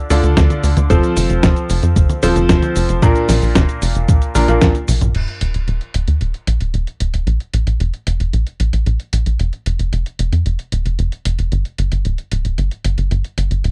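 A straight 4/4 pulse at 113 BPM drives this nostalgic, danceable italo disco excerpt, where a tight, punchy sequencer bass and a gritty, dusty soul sampler-style kit with cabasa, hi-hat and a medium-tuned snare run throughout, a thumpy electronic kick joins from 0.4 to 4.7 seconds, and a clear, worn grand piano with tape echo hits stabs over Dm, F and Bb until a band accent at 4.6 seconds and a drum fill lead into a section built on power chords, all in a dry, close 1970s-style studio sound.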